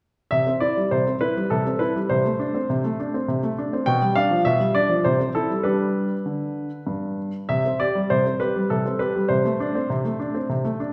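A clear, polished baby grand piano plays solo from 0.3 to 10.9 seconds in this graceful, cheerful fragment of a classical-period sonatina, moving through a flexible, rubato three-beat lilt and carried by a wet recital-hall reverb that places the listener further back in the room.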